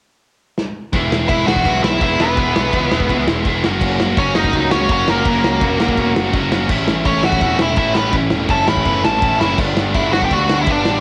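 A driving straight 4/4 pulse at 166 BPM kicks off this energetic, upbeat punk rock excerpt, with a loose indie drum kit opening on a quick fill at 0.6 seconds before settling into kick, snare, ride and crash with a tight kick, dark cymbals and a pumping small-room feel. At 0.9 seconds the band crashes in together: two picked, overdriven rhythm guitars, one biting and the other bright, sit in the background playing riffs, while a fuzz-soaked, growly electric bass holds down the low end. From 1.3 seconds a nasal lead guitar with a parked wah takes the melody up front, its dark, overdriven tone cutting through the mix. The harmony moves from E to F#, then A, then G, giving the short passage a restless, forward-leaning push. The drums and guitars carry the grainy character of a home cassette recording, with light reverb adding a touch of space to the raw, scrappy energy.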